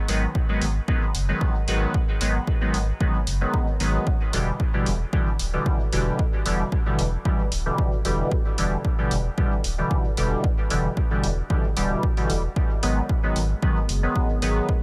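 A juicy, warbling polysynth opens with resonant, detuned, filter-swept stabs up front, colored by chorus, phaser, dub echo and sidechain pumping, alongside a round sine sub bass and an analog hi-hat, with a punchy analog kick joining at 0.3 seconds. This hazy, meditative dub techno excerpt moves in a straight four-four feel from G#m7 to Em7 and back to G#m7, with a fairly dry sound. At 13.6 seconds a deep, moody pad with a slow attack, chorus and built-in reverb enters in the background on sustained chords.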